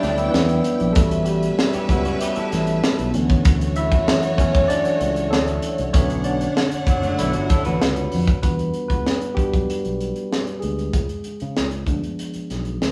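A tight, up-front funk kit, punchy, growly fingered bass, a barky, lightly overdriven tine electric piano, a dark, slightly broken-up guitar riff with spring reverb and a lush, woody bowed string section all open this cinematic, smooth 1970s-style soul excerpt at 96 BPM in E dorian, with the electric piano soloing throughout. A mellow, very quiet vibraphone with soft mallets and a slow motor vibrato adds ringing texture from 1.6 s, the guitar riff returns at 6.9 s, and the strings drop away at 8.4 s as the chords move from Em9 to C#7b9. The band plays live together in one room, set in a moderate stone-room reverb.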